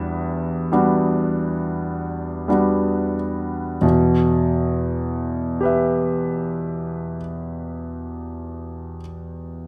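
Mysterious and hazy, this brief fragment of impressionist classical music features a solo concert grand piano in 9/8 with free, rubato phrasing, slowing down through the opening 3.8 seconds. The piano is clear and intimate, placed up front with deep bass, long sustain and audible action noise, and it spans E2 to E5 as an opening Em9 gives way to a plain E minor chord at 3.8 seconds. Close, detailed microphones and light reverb give the sound a polished presence.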